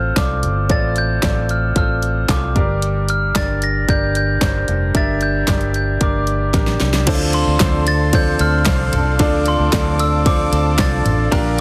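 Earnest and bittersweet, this piano-driven pop excerpt in D minor moves at 113 BPM in a straight 4/4: a brilliant grand piano with long sustain accompanies F and Gm chords while a glockenspiel struck with soft plastic mallets carries a ringing, bell-like melody. A round, foam-muted vintage electric bass and a punchy, up-front pop drum kit with a fat snare, kick, hi-hat, toms, cymbals and handclaps anchor the track, and a drum fill at 6.5 s leads into a Dm7 passage at 7.1 s. There a very quiet, dark and woody string section adds lush sustained chords, a clean, direct-recorded electric guitar riff with spring reverb sits in the background, and a faint, crisp group handclap appears, in a dense, heavily limited modern master with light studio reverb.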